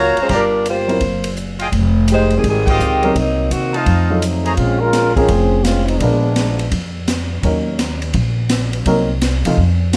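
Swung eighths drive this sultry, brassy big band swing cut, where a dark, tight saxophone section carries the melody over bright, soft-edged trumpet stabs, a woody, thumpy pizzicato upright bass, an airy drum kit with a punchy kick and a slightly detuned upright piano, until the band hits an accent at 2.6 s and a clear, close-miked trombone section steps up front at 4.2 s, the whole ensemble set in a moderate club reverb.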